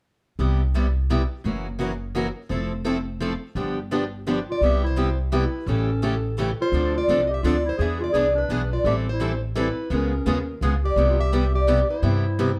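Swinging and lively, this excerpt of acoustic string swing in the jazz manouche style moves at 170 BPM in 3/4 in C major, with a dark production and light reverb. From 0.4 seconds, two boxy, picked parlour steel-string acoustic guitars carry the accompaniment, one warm and up front, the other bright and set in the background, both with finger squeak, while a woody, thumpy pizzicato upright bass on gut strings sits up front beneath them. At 4.5 seconds a plugged-in parlour guitar with fresh strings takes the melody, joined by a mellow jazz clarinet on a second line with light vibrato, subtone, scooped notes and a smooth top.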